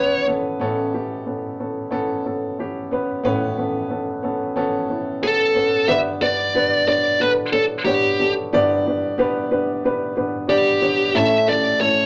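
A high-gain, distorted electric lead guitar carries the melody, picked and up front, with a brief appearance at the very start before it returns at 5.2 seconds to play through to the close. Beneath it, a dark, woody upright piano plays accompaniment for the whole excerpt, mellow and natural in tone as it moves from Aadd9 to G at 5.9 seconds and back to A. The result is an uplifting, warm pop passage in a straight four, set in a wet club-sized reverb and cut from a longer piece.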